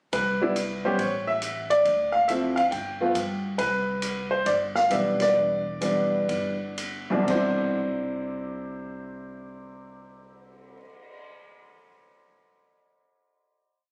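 A swung 4/4 groove at 118-139 BPM opens this brief, sophisticated jazz piano trio piece in C major, with sticks on dark ride cymbals, a medium-tuned snare, a boomy kick, hi-hat and crash over a woody, pizzicato upright bass playing in a two-feel. Up front, a clear grand piano with short sustain and plate reverb states a motif-based melody in sentence-like phrases over syncopated, rootless comping, moving through Cmaj7, Dm7 and G7 to a Cmaj9 as the band slows from 3.6 s and hits a shared accent at 5.1 s. A final Cadd9 chord rings from 7.3 s in a warm, club-like room captured on a phone.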